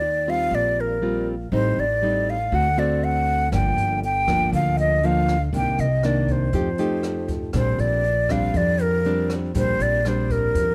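Dry, this relaxed, sophisticated bossa nova excerpt puts a breathy, hollow flute with vibrato up front over dark, fingerpicked nylon-string guitar and woody, thumpy pizzicato upright bass, while a distant, roomy brush kit with a boomy kick, hi-hat and rim click joins at 3.5 seconds.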